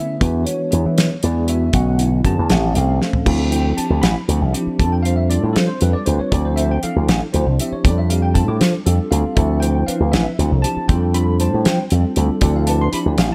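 A clean tine electric piano with lush chorus opens this nocturnal, driving jazz fusion excerpt at 79 BPM in 6/8, joined at 0.2 seconds by a punchy, bright slap bass through an envelope filter and a dry, damped 70s acoustic kit with a fat snare and tight kick. After a brief turnaround through E9, Bm9 and A7alt capped by a drum fill at 3.0 seconds, the groove settles into D dorian, alternating Dm9 and F69. The bass, kit and electric piano all sit up front in light reverb, with the bass the loudest of the three.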